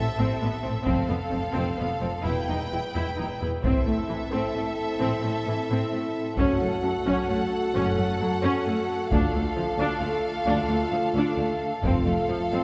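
A cinematic, epic orchestral film score cue in 3/4 at 132 BPM, heroic and dramatic in mood, cut from a longer piece and settling into A minor from 3.6 seconds. A warm, lush symphonic violin section carries the melody between E5 and G5 with smooth vibrato, while a studio violin section with lighter vibrato holds a second line beneath it. Violas with expressive portamento fill the accompaniment, and a rich, close cello section joins a clear, focused double bass section on the bass. A taiko ensemble struck with heavy sticks enters at 0.9 seconds, and a mellow, tight French horn section adds sustained chords from 3.6 seconds as the harmony moves through Am, F♯m, Dm and F. The whole ensemble sits in a church-like space with a long, wet reverb that lends the strings and brass a grand, resonant sweep.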